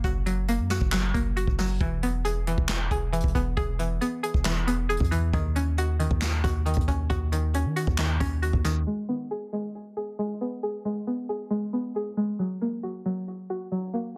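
Dense, heavily limited and low-passed, this excerpt from a longer hip hop and trap piece sits in a small room ambience, moving at 136 BPM in a half-time feel in G# minor with a melancholic, menacing mood. A bright, twangy string-like resonator pluck plays arpeggios up front through chorus, phaser, tape echo and a low-pass filter sweep, while an acoustic jazz kit played with brushes adds a boomy kick, snare, hi-hat and handclaps. A deep, sine-toned 808-style bass stops at 8.9 s as the harmony moves from F#, E and D#m7 onto G#m and back to F#.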